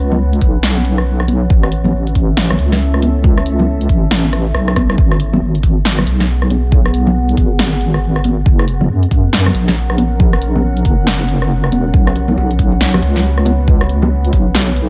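Dry-sounding, this cut from a longer deep dubstep piece feels heavy and cavernous at 138 BPM in a swung half-time groove: an up-front electronic kick and a punchy deep house kit of hi-hat, rim click and snare, with a drum fill at 4.3 seconds, sit over a detuned square-and-sine wobble bass with chorus and tube saturation, while soft-handed congas and bongos with dub echo stay in the background and a moody, warbling sawtooth pad with chorus and reverb sustains chords moving from Bsus2 through A, G#m7 and F#.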